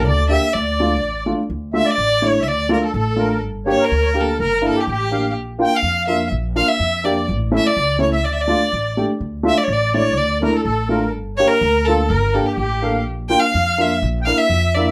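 A rich, vibrato-laden bowed violin carries the melody up front in this bittersweet, soulful klezmer cut from a longer piece, moving in a straight 2/4 at 125 BPM in D harmonic minor over a shimmering, reedy musette accordion second line, a dark, slightly detuned upright piano with long sustain entering at 0.3 seconds, and a growly, thumpy pizzicato upright bass, all set in a moderate studio reverb as the chords move through Gm, Dm, Bb and A.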